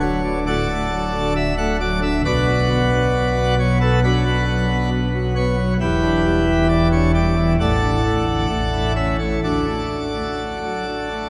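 A pipe organ on full plenum carries this majestic, reverent classical chorale alone, its mixtures giving a brilliant, baroque-voiced sound with a touch of chiff at the front of each pipe's speech. The instrument sits up front, spanning D1 at the bottom to F#5 at the top, and plays for the whole 11.3 seconds of this fragment cut from a longer piece. The tempo is a slow 67 BPM in 4/4, taken with rubato, and the harmony stays firmly in D major, moving from D through Bm and Em7 before D/A and A lead to a return to D at 9.4 seconds. A wet cathedral reverb with a 4.6-second decay surrounds the organ, lending the chords a spacious, church-like grandeur.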